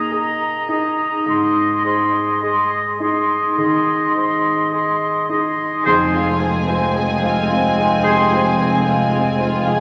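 Cinematic, emotional film score with a hopeful, tender mood, drifting rubato at around 51-56 BPM, where an up-front oboe, bright airy flutes and a soft clarinet sing second lines over vintage grand piano and ringing thumb-plucked harp before, at around 5.8-5.9 seconds, bowed sul tasto strings arrive, led by a rich violin melody with light vibrato, joined by warm second violins and carried by dark double basses, warm cellos, floating violas and a clear French horn section, all bathed in a lush scoring-stage reverb.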